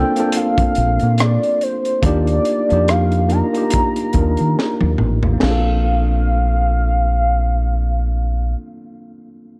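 A velvety, wave-folded synth lead carries the melody with chorus and vibrato over a worn, slightly out-of-tune electric piano that is lightly overdriven through built-in speakers. This relaxed, soulful neo-soul R&B excerpt sits at 71 BPM in Bb major with a swung feel, moving from Bbmaj9 to Ebmaj9 and back. A round, punchy dub bass sits up front, while a gritty, saturated breakbeat kit with dark cymbals and a high-tuned snare plays a fill from 4.6 seconds and drops out at 5.6 seconds, all in a dry, close 1970s-style small-room sound.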